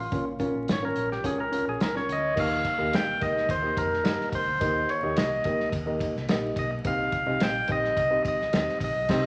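Uptempo 1960s-style soul in Eb mixolydian at 107 BPM in a straight 4/4, this short cut from a longer piece feels danceable and warm. A percussive tonewheel organ carries the melody up front, its lightly overdriven, full tone marked by key click and third-harmonic percussion through a stationary speaker, and it takes a solo over the opening 2.4 seconds. Beneath it, a vintage muted fingered electric bass sits low with a round, foam-muted, amped sound, while a dark baby grand piano adds mellow, intimate accompaniment with audible action noise and short sustain. The soul drum kit plays kick, snare, hi-hat, ride and crash with a tight, mid-forward, small-room character, dusky cymbals and a rolled-off top, roughened by vintage 12-bit sampler grit. The chords move from Bbm to Eb and then Cm, the band hits an accent at 9.1 seconds, and a large, wet studio reverb surrounds the music along with vinyl crackle and a dull, capped top end.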